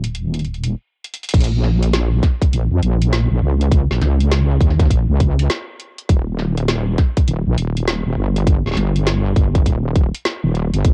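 Dry and close, with the grain of a home cassette recording, this playful, swaggering glitch hop clip swings along in a loose sixteenth-note shuffle. A heavy, saturated wobble bass with a dark, detuned sawtooth edge and a chorus effect sits up front from the start alongside a quieter drum kit of crash cymbal, metallic hi-hats and a woody snare. After a brief stop at 0.7 seconds and a drum fill, the drop lands at 1.3 seconds, when a tight, layered electronic kick joins up front and drives the groove to the end.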